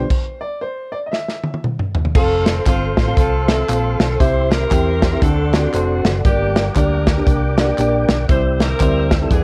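Jubilant and soulful, this uptempo gospel excerpt swings in 4/4 with the worn, warbling sound of old cassette tape and very little reverb. It opens on a stop, where a clear, boxy grand piano carries a short melody that ends at 1.6 seconds. Beneath it sit a dark, intimate second grand piano with audible action noise, a round, amped hollow-body electric bass placed up front, and a soft, flute-like tonewheel organ in the background, treated with a fast rotary speaker and chorus vibrato. The airy, polished country drum kit, with a punchy kick and a medium-tuned snare, plays a fill from 1.1 seconds. At 2.2 seconds a tight, present saxophone section with vibrato takes over the melody in a jazz style, joined in the background by close, dry tambourine and group handclaps, as the harmony moves through F, C, D7, Gm and back to C.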